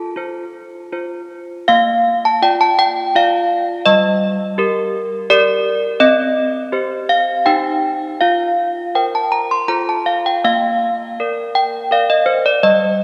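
Classical handbell tune in Bb major at 82 BPM in 3/4, festive yet serene, played on solo desk bells from G3 to C6 whose clear, clanky, slightly out-of-tune ring sits up front in a vintage, band-limited sound, bathed in long church reverb, as the harmony moves from F through Gm and Cm to an Fsus4 at 8.2 seconds before settling on Bb at 10.4 seconds in this short excerpt.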